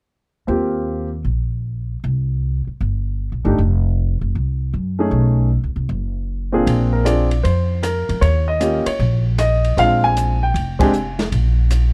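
Piano and woody pizzicato upright bass open this swinging jazz piano trio excerpt in Bb major at 155 BPM, with the up-front grand piano offering a brief phrase before returning at 3.4 seconds to carry the short-sustained melody over chords such as Eb69 and B13. At 6.7 seconds the open drum kit joins for the second section, adding dark cymbals, rim clicks and a boomy kick alongside the bass, and the whole trio hits a shared accent at 10.7 seconds. The dry, close 1970s-style studio sound gives the recording a warm, intimate feel.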